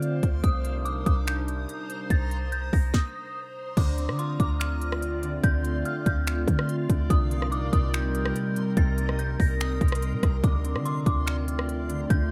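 Over a half-time trap beat at 144 BPM, with a hard-clipped kick, sharp snare, crisp hats, rim clicks, finger snaps and crash up front alongside a deep, boomy 808-style bass, this hazy, melancholic cloud-rap excerpt drifts on a warbling, nostalgic tape-like pad with sidechain pumping, a reversed, dreamy swelling texture and an eerie, inharmonic FM bell melody through phaser and delay, while a fingerpicked concert harp enters in the background at 3.8 seconds after a brief stop, moving between Cm7 and Dm7 in a rough home-demo sound.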